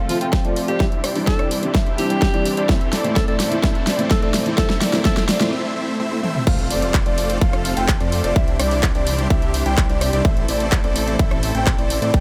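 Triumphant and uplifting, this festival progressive house cut in F major at 127 BPM opens with a build-up in which a huge, euphoric supersaw riff and a dark, boxy grand piano arpeggio move through filter sweeps over background strings with a biting vibrato. Meanwhile a bright alto saxophone sings a pop-style solo melody over an intimate, vintage-sounding piano accompaniment with audible action noise. Overdriven big-room drums with a huge snare drive a fill toward a brief break, with a very quiet electronic riser and impact underneath, and a punchy, up-front kick pumps the synths and strings through sidechain compression. At 6.5 seconds the drop lands as a thick, lush detuned saw bass with chorus joins, carrying the chords F, Cadd9 and Am under the soaring lead in a light studio reverb.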